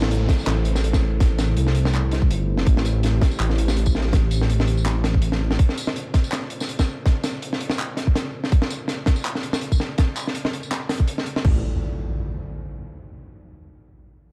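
Half-time drum and bass at 164 BPM in A phrygian, tense and cinematic, where a tight, up-front electronic kick and crash kit runs from 0.3 s alongside a gritty, saturated breakbeat kit of snare, hi-hat, handclaps and tambourine. Beneath them a rumbling detuned saw bass holds the low end until 5.6 s as a nasal, chorused analog pad sustains Am then Bb in the background under a filter sweep with sidechain pumping, and a downlifter opens the cut while an impact lands at 11.4 s.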